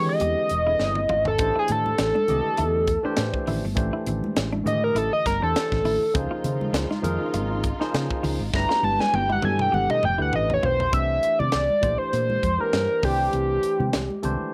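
A tight funk groove at 101 BPM in 4/4, with a light swing on the sixteenths, drives this slick, funky slice of electric jazz fusion cut from a longer piece. Up front, an overdriven synth lead takes a solo through the opening 10.9 seconds, its gritty, screaming sawtooth-and-square tone carrying vibrato, chorus and distortion over a harmony that moves from E7alt through Am7 and Dbmaj9 to G13. Beneath it, a barky tine electric piano with a phaser comps throughout, a round, hollow-body fingered bass holds the low end, and a high-tuned snare and tight kick on a small-room kit snap out fills, the second stretching from 8.5 to 10.9 seconds. Soft-handed congas with a thick-skinned sound sit in the background alongside clean, compressed guitar stabs treated with analog chorus and delay, while a dark, woody string section sustains very quiet, lush chords until the harmony settles into C major at 10.9 seconds. 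In this closing stretch the strings and guitar have stopped, the chords shift through Cadd9, Bbmaj9 and Am7/C, and the electric piano slips in a brief fill at the very end, all framed by light reverb.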